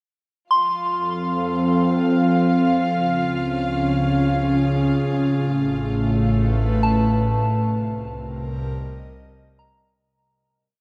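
Weightless and serene, this short ambient piece drifts at 76 BPM in a straight 3/4, set in F mixolydian and bathed in a vast cathedral reverb. An airy, breathy pad sits up front with a detuned sawtooth-and-noise body and chorus, holding slowly shifting chords that move from F through Db and Asus2 to Cm7. Above it, a soft FM synth bell scatters pure, mellow arpeggio notes from 0.5 seconds, returns at 6.8 seconds, and trails into a diffuse ambient delay. Beneath, a deep, ominous drone fades in with a rumbling, nasal root bass wrapped in its own reverb. A muted chamber violin section, bowed con sordino with vibrato, adds a veiled, dark texture and a held high note while gradually fading out, and the whole piece fades away from 6.8 seconds.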